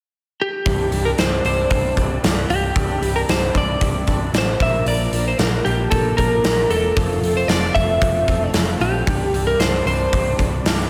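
A slightly broken-up lead guitar, picked and up front with slapback and tape echo, opens this anthemic, cathartic stretch of quiet-loud alternative rock at 0.4 s, carrying the melody over a Csus2, Bb and Fmaj7 progression. From 0.7 s a lo-fi, compressed guitar through a small old amp plays arpeggios wrapped in ensemble chorus and echo, while a dark, round hollow-body bass and a big, polished acoustic drum kit with a punchy kick and medium-tuned snare fill out the low end and rhythm. A wet recital-hall reverb gives the whole arrangement a big arena sound in this cut from a longer piece.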